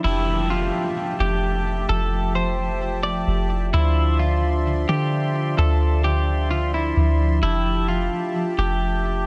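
With a background electronic downlifter running until 3.7 seconds, this melancholic, ethereal half-time hip hop fragment at 130 BPM layers a clean, picked semi-hollow electric guitar melody with delay up front over reedy, sweet accordion chords with light tremolo tuning, ringing thumb-plucked concert harp arpeggios with delay, and a deep, round, soft 808-style bass, all in light reverb as the harmony moves from Fmaj9 to Dm9 and back.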